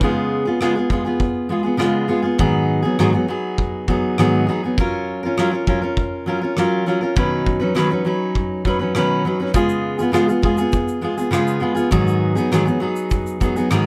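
A relaxed, straight 4/4 groove at 101 BPM from a loose indie drum kit of kick, rim click and shaker, its punchy kick sitting in a pumping studio room, carries this carefree, easy-going acoustic pop cut from a longer piece in Db mixolydian. Up front, a full-bodied jumbo steel-string guitar fingerpicks the accompaniment throughout, moving through Db7, Abm7, Gbmaj7 and Cbadd9. A dark, very quiet second fingerpicked guitar adds a brief arpeggio only in the opening 0.6 seconds, all under light reverb.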